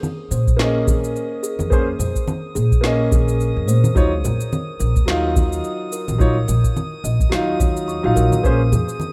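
A rough home-demo mix in a small, lightly reverberant room carries this short, smooth sunset chillout cut in Bb minor at 107 BPM, its 16ths gently swung as the chords move from Bbm9 to Ebm9 and back. Electronic cabasa and a woody snare sit alongside soft-handed congas tucked in the background, while a deep analog kick enters at 0.5 seconds and a dark pizzicato upright bass anchors the low end. A clear, up-front grand piano and a hollow, fingertip-plucked kalimba share tape echo as the kalimba spins airy arpeggios, all floating over a glassy texture of drifting harmonics with chorus and long sustain.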